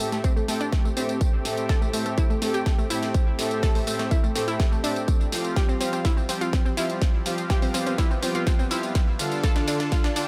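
A punchy, up-front electronic kick drives this progressive house passage at 124 BPM in a straight 4/4, entering at 0.2 s, while a deep house kit adds hi-hat, a fat snare, and tambourine with a tape-warm, small-room character. Cut from a longer piece in A minor, the passage feels expansive and emotional, moving from Am7 to Fsus2 and on to Dm as the whole stretch serves as a build-up with a drum fill running throughout. An analog pluck spins arpeggios with a warbling, vintage quality, its detuned sawtooth tone colored by chorus, cassette tape, and tape echo. A soft supersaw lays down smooth stabs across a broad range, shaped by a filter sweep and low-pass filter plus tape echo, and a lush, airy unison pad sustains chords in the background with chorus. The pad, pluck, supersaw, and the kit's hats and percussion all breathe with sidechain pumping, while a round analog bass sits barely audible beneath it all under a light reverb.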